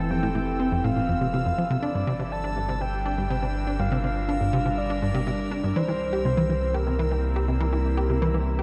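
A punchy, wave-folded analog bass riff with tape echo opens this luminous, expansive slice of ambient, sequencer-driven space music, joined from the first moment by a deep, round sub bass, a soft octave-layered synth lead carrying the melody with vibrato through shimmer reverb and tape echo, an evolving, warbling wavetable pad holding sustained chords, and a faint, bright bubbling texture of resonant random filter steps, the harmony moving from Fmaj7 to Gm7 to C7 in a dark production bathed in moderate plate reverb.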